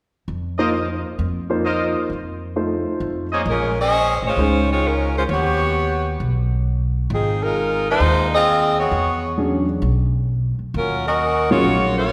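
A pizzicato upright bass opens this sultry, dramatic big band swing excerpt at 0.3 s, its woody steel-string tone sitting up front in Bb minor at 132 BPM with a swung eighth-note feel. A warm concert grand piano soon joins as accompaniment, intimate and natural with audible action noise and a deep low end. Alongside it, a tight, clear trumpet section plays stabs with a smooth top over an F7sus4 that moves to F7. At 3.5 s the trumpets have stopped and a bright saxophone section takes the melody, its soft attack and light vibrato making it the most prominent voice. The harmony moves through Bbm11, Eb7alt, Ab6, E13 and Ebm9, with the piano dropping out and returning at 9.4 s, while bass and saxophones carry on to the cut. A wet concert hall reverb gives the ensemble a spacious, resonant setting.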